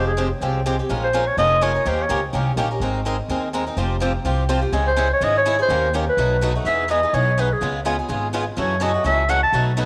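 Acoustic string swing in the jazz manouche style, playful and lively, with a short passage cut from a longer piece and set in a moderate plate reverb. A mellow, breathy clarinet leads the melody up front with vibrato and scooped notes, pausing after 2.2 seconds and returning at 4.9 seconds. Beneath it, two bright, boxy picked swing guitars accompany, one up front and one in the background, while a woody, thumpy pizzicato upright bass on gut strings anchors the low end as the harmony shifts into a new section at 6.6 seconds.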